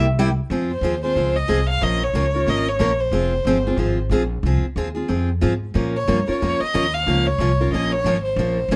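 Swung eighths in 4/4 drive this fiery, swinging fragment of acoustic string swing, where a bright picked steel-string guitar and a woody, thumpy pizzicato upright bass on gut strings play up front from the start, joined at 0.7 s by a single intimate violin playing the melody sul tasto with an airy bow, soft attack, light vibrato and a nasal tone, all set in light reverb.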